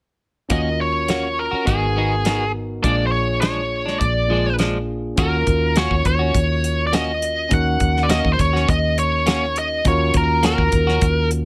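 A light reverb gives this brief, brooding soul blues cut a smoky room sound, with the drums kept dry and dull at the top. Over a straight-eighth feel, a bright, overdriven lead guitar sits up front with a biting, picked melody in a high register. A gritty, barky tine electric piano played through a combo amp fills in the accompaniment, while a clean, compressed electric guitar adds picked stabs. Underneath, a dark, round, foam-muted fingered bass comes through amped and punchy, and the 70s drum kit contributes a fat snare, tight kick and hi-hat. The harmony moves through Ebm7, Abm7 and Bb7 before returning to Ebm7 at 5.2 s, where the music settles into a new section.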